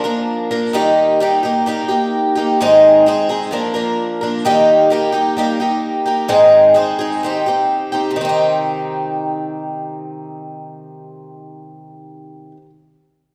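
A picked twelve-string acoustic guitar plays alone for the full 12.7 seconds of this wistful, reflective rock passage, cut from a longer piece and moving at 129 BPM in C minor. Its bright, boxy, octave-doubled tone shimmers up front, with audible finger squeak, as it cycles through Bb, Eb and Ab before settling on C minor at 7.2 seconds, and a new section begins at 8.2 seconds. A wet recital-hall reverb surrounds the guitar with the resonant air of a church or concert hall.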